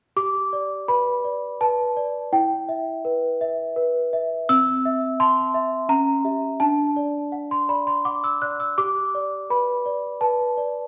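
A delicate, bell-like celesta rings up front in a recital hall with a wet reverb that lets each note hang for about a second and a half, giving this short cut from a longer classical lullaby an airy, dreamy glow. Playing alone in a gently swaying triple metre with a free, rubato feel, the celesta spans from middle C up into its sparkling high register, its medium felt hammers lending a sweet, innocent tone. The harmony drifts through minor shadings and a brief diminished chord near 5.9 seconds before settling home at 8.8 seconds.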